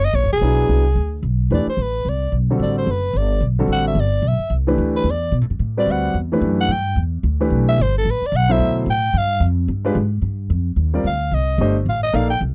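Cool and hypnotic, this swinging modal jazz piece, cut from a longer work, sets a raspy, growling soprano saxophone with subtone and vibrato over a woody, thumpy pizzicato upright bass. An intimate grand piano, whose action noise is audible and whose notes hold with long sustain, enters at 0.4 s on an E9 chord. The saxophone takes a solo from 1.5 s over harmonies moving through A9sus4, G7(no3) and Cm9, all captured in a dry, close 1970s-style studio sound.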